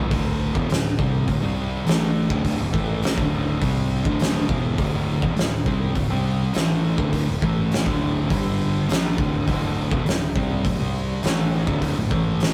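Ominous and sludgy, this stoner and doom metal excerpt grinds along at 102 BPM in a straight 4/4, cut from a longer piece. Two thick fuzz guitars play the riff together from the opening, their tone dark and picked, with one of them sitting further back in the mix. A growling fingered electric bass runs underneath in the background, bright and punchy, its overdriven signal heard direct and amped. The oversized low-tuned acoustic drum kit is up front, its boomy kick, fat snare and hi-hat gritty and saturated in a big, pumping room. The harmony rests on a D5 power chord before moving to G5 at 8.3 seconds and landing on D minor at 8.9 seconds. Light reverb and a rough rehearsal-room sound give the recording a raw, live character.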